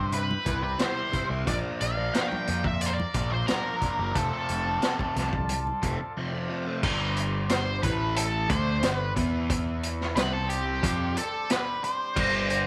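Psychedelic rock at 90 BPM with a trippy, hazy mood, this short cut opens on a double-tracked, hollow-body semi-hollow guitar riff with flanger, joined a moment later by a gritty, punchy garage drum kit, over a round, overdriven picked bass and a very quiet, buzzy combo organ holding sustained chords, while faint bright congas appear from 0.3 to 5.8 seconds and a dark octave-fuzz lead guitar, drenched in wah, distortion and slapback echo, carries the melody before stepping forward as a solo at 6.8 seconds, all bathed in spring reverb.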